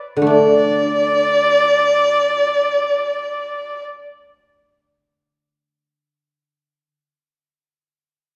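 A reverberant recital hall surrounds this brief passage of Chinese traditional music, heard from a seat further back in the room. The mood is festive yet graceful, drawn from a longer piece. An acoustic guzheng, played with fingerpicks, supplies the accompaniment with a silvery, ringing tone in its lower and middle register, sounding from 0.2 s onward. A single bowed erhu carries the melody high above it, its nasal, biting voice colored by light vibrato and sliding portamento. The erhu falls silent at 3.8 s, leaving the guzheng to ring on alone until 6.8 s.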